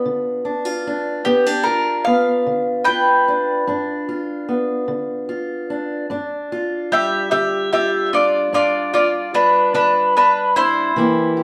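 Acoustic country blues in G mixolydian, this laid-back, gritty excerpt moves at a slow 49 BPM in a straight 12/8, resting on a G7 chord. A dark, boxy parlour steel-string guitar fingerpicks the accompaniment from the start, and at 1.2 seconds a round, double-strung mandolin enters, taking the picked melody up front and sitting louder than the guitar. The duo sounds played live together in a stone room with a wet reverb.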